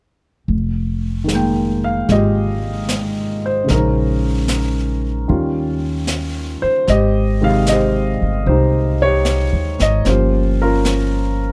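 A warm grand piano sits up front in this smoky, melancholic jazz ballad fragment, entering at 1.2 seconds to voice rich, extended chords from its middle register up into its upper range. Beneath it, a pizzicato upright bass with gut strings gives a woody, dark and thumpy low line, close and present from 0.5 seconds onward. A brushed drum kit, played in an acoustic studio room on a medium-tuned snare and hi-hat, stays soft and further back, carrying a lazy swung feel in 4/4. The harmony drifts from Fm11 through Bbm11, Eb9 and Abmaj7 before settling onto a shadowed Gm7b5 at 10.1 seconds. Recorded dry with close, detailed microphones, the playing feels intimate, as if heard from the edge of the bandstand, and this is a short section cut from a longer piece.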